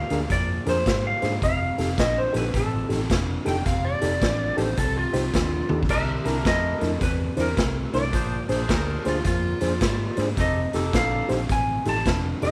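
A clean, dark lap steel guitar opens this gritty, soulful electric blues shuffle at 107 BPM, carrying the melody in F mixolydian over a lo-fi, slightly broken-up electric guitar riff played through a small old amp. Almost at once a reedy electric piano with fast tremolo fills in the accompaniment through its built-in speakers, while a round, foam-muted vintage bass and a saturated, up-front garage drum kit settle into the swung groove. At 3.5 seconds an overdriven slide guitar adds a second line above the band, and a drum fill at 5.6 seconds marks the turn to the C9 chord. From 5.9 seconds a tight, bright saxophone section punches in with jazz-style stabs carrying a light vibrato. The kit's punchy kick, medium-tuned snare and pumping stone-room sound give the whole excerpt a raw edge, set in a small room with light reverb, and it is cut from a longer piece.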